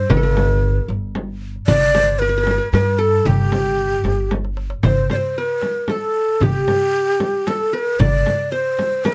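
Passionate and warm, this excerpt of an Arabic maqam ensemble moves at 114 BPM in a straight 3/4 in G maqam rast, led by an up-front, breathy ney whose vibrato and tongued phrases carry the expressive melody. A mellow, bright-edged qanun adds a quieter second line, and a woody pizzicato upright bass sits prominently beneath until 8.2 s, while a close frame drum and a dry clay darbuka in the background keep the rhythm. A drum fill leads into a new section at 4.8 s, all captured through close, detailed microphones with light reverb.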